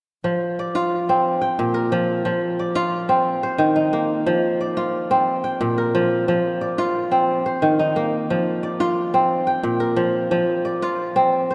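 In a straight 12/8 at 119 BPM counted in dotted quarters, a solo kora plays from 0.2 to 11.5 seconds, up front and fingerpicked. It traces a flowing West African traditional figure that keeps returning to F5, Bb5 and Eb5 within a span from Bb2 to G5. The acoustic tone is crisp and ringing, with a warm glow, and a wet cathedral reverb places this moment from a longer piece in a vast, echoing space.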